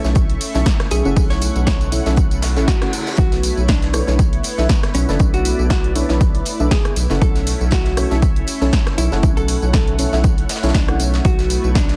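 Deep house at 119 BPM with a late-night glow, this excerpt sets a dark, clean hollow-body jazz guitar melody through analog delay over a smooth detuned pad and soft, deep chord stabs coloured by chorus, phaser and 12-bit sampler grit, with pad and stabs pumping against an up-front overdriven electronic kick, a rubbery square-wave bass, a punchy analog drum machine with tambourine and rim click, a background acoustic kit of hi-hat and snare, and a brief reverse cymbal at 2.4 seconds, moving between A and Bm11 in a dense, heavily limited mix.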